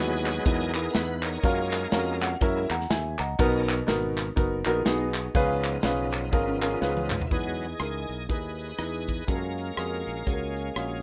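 Jubilant and reverent, this short uptempo gospel clip cut from a longer piece moves at 122 BPM in 4/4 with a swung eighth-note feel in F# major. A full, shouting tonewheel organ carries the lead throughout, lightly overdriven with key click, chorus vibrato and a slow rotary speaker, over chords that move from Emaj7 through F#maj7, F#7, Bmaj7 and C#7. An intimate concert grand piano sits up front with deep bass and audible action noise, adding a fill around 1.9 seconds, while a punchy, direct fingered electric bass anchors the low end. An airy, polished acoustic drum kit with a medium-tuned snare, punchy kick, rim click and toms drives the groove alongside crisp group handclaps that drop out at 7.2 seconds, just as a drum fill ushers in the second section at 7.3 seconds. A dark, clean, compressed electric guitar with ensemble chorus slips in quietly in the background from 4.7 seconds to 7.3 seconds. 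The whole mix has the rough, lightly reverberant character of a home demo.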